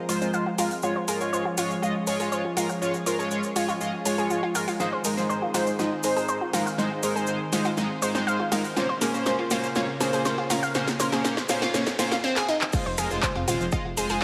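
Progressive house at 121 BPM in F minor, expansive and driving, this excerpt builds for 12.7 seconds as a lush, warbling unison pad holds chorused chords, a round analog pluck arpeggiates under a filter sweep with tape echo, a glossy chorused polysynth stabs up front, and a big-room kit with a huge snare, metallic hats, snaps and claps rolls through fills beside grainy cabasa, all in a lush hall reverb, until the drop at 12.7 seconds brings in a punchy electronic kick and, at 12.9 seconds, a dark, rumbling detuned saw bass, with sidechain pumping on the pad, pluck, polysynth and bass over chords moving from Fm through Db, Ab and Bbmadd9 back to Fm.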